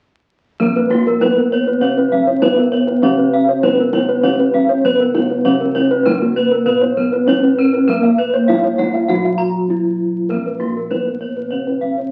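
Heard through the crackle of a very old 78 rpm record and a wet studio reverb, this brilliant, shimmering Balinese gamelan fragment moves at 99 BPM in a straight 4/4 in Bb pelog. A mellow, soft bronze metallophone played with padded disc mallets carries the melody in paired tuning, while a mid-forward metallophone under a wooden mallet plays the accompaniment. Two ringing metallophones spin arpeggios above, one bright, airy and up front under a horn mallet, the other struck with a wooden mallet, as dark, round bossed gongs hold the bass in the background and a deep, distant kendang played with soft hands adds percussion, with a short break from 9.4 to 10.3 seconds.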